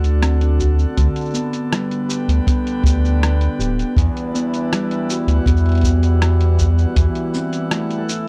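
Pastoral and delicate, this short folktronica passage, cut from a longer piece, moves at an unhurried pace in a straight four. A mellow, thumb-plucked Celtic harp sits up front with ringing arpeggios touched by tape echo, while a reedy, nasal harmonium breathes sustained chords behind it in a boxy small room. A round analog bass, deep and dark with a fast attack, holds the low end until 7.1 s. A lo-fi sampler-style kit of hi-hat, rim click and shaker sounds compressed and muffled, as if re-recorded in a small room, and a punchy acoustic kick joins at 0.6 s. The harmony moves from D through G over D and Emadd9 to Am. The sound is dry and close, like a 1970s studio recording, with a faint mains hum underneath.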